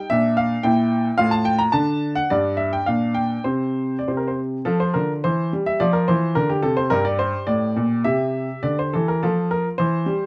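Close, detailed microphones and a light reverb put a bright baby grand piano up front, its brilliant, natural tone ringing with long sustain through this short cut from a classical-period sonatina. Played solo in 2/4 at roughly 97 to 111 BPM with a rubato feel, the cheerful, playful music spans G2 to Bb5, tuned to A4 = 441 Hz. An opening phrase built around Bb, Edim/Bb and F/A gives way at 4.7 seconds to a second section moving through Dm7, C/E, Dm, Gm and C before the fragment ends at 10.3 seconds.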